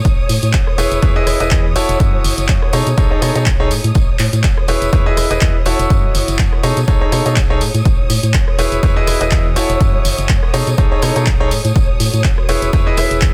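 A dense, heavily limited modern mix opens this joyful, feel-good piano house excerpt at 123 BPM in E major, where a bright, brilliant concert grand piano riff enters at 0.8 seconds up front with dub echo and sidechain pumping over a cycle of A6, Emaj7, F#m7 and B13 chords. A dry, punchy electronic kick and a tape-warm analog drum machine carrying handclaps, hi-hat and rim click drive a lightly swung groove, joined in the background by a tambourine. Beneath them, a hollow, organ-like FM bass pumps, while a bowed string section with vibrato and a soft attack holds sustained chords and a moody, detuned ambient pad lies very quietly beneath.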